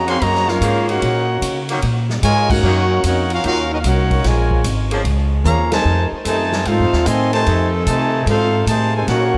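A dreamy studio mix bathed in moderate plate reverb sets a sultry, brassy mood in this brief cut from a longer big band swing piece. Up front, a tight, clear trumpet section carries the melody with vibrato and a smooth top, while a dark, vintage-sounding trombone section with a soft attack plays a second line beneath it; both horn sections carry a diffuse ambient delay. A woody pizzicato upright bass with steel strings sits prominently in the mix, and a loose, roomy saxophone section holds sustained chords in the background. The swinging drum kit has a punchy kick, a medium-tuned snare, hi-hat, ride, crash and toms, with a drum fill at 5.5 seconds and full-band accents at 2.4 and 5.7 seconds. The harmony moves from Ebm7 to Bbm7 before landing on F7#9.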